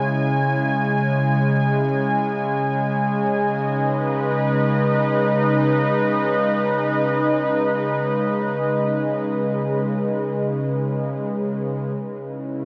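A warm analog pad plays alone, up front, through this melancholic, spacious ambient excerpt in free time, tuned to A4 = 436 Hz: its detuned sawtooth tone is smooth, warbling and vintage, with a slow attack and sustained notes colored by chorus and tape echo, drifting from C#m to G#m/C# at 2.2 seconds and back to C#m at 11.9 seconds, all bathed in a huge, wet reverb with a 7.7-second decay that evokes a vast, echoing space.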